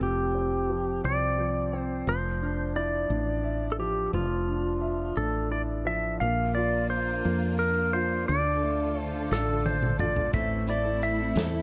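This six-eight pop ballad, cut from a longer piece, sways tenderly in a dark, warm production with light reverb and a small-room ambience. A bright, twangy lap steel guitar carries the melody up front, its clean slide tone compressed and shaped by volume swells and a tape echo. Beneath it, a concert grand piano plays intimate accompaniment with deep bass, long sustain and audible action noise. A woody fretless electric bass sits round and close in the low register. At 6.2 seconds a lush bowed string section enters with vibrato-rich sustained chords. A drum kit played with bundle sticks, with a punchy kick and a medium-tuned snare, comes in with a fill at 9.3 seconds, and a picked steel-string acoustic guitar adds background arpeggios from 10.3 seconds.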